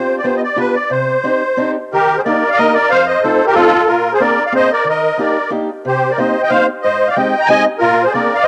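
A musette waltz in Eb major, this short excerpt moves at 184 BPM in 3/4 with a rubato feel, and its mood is nostalgic and bittersweet. A musette accordion carries the melody from the start, its reedy, shimmering tone in wet musette tuning sitting up front, with a dark, smooth edge and a cassette-tape colour. Beneath it, a fingerpicked steel-string acoustic guitar with a boxy parlour character plays the accompaniment lower in the mix, finger squeaks audible on its strings. The harmony opens on G7 and Cmadd9 before settling at 1.9 seconds into a passage that moves through Ebmaj7, F7, Bb9, Cm7 and Abmaj7. A moderate spring reverb and the intimacy of a home cassette recording give the piece a homespun quality, and it is cut from a longer piece, ending at 8.5 seconds.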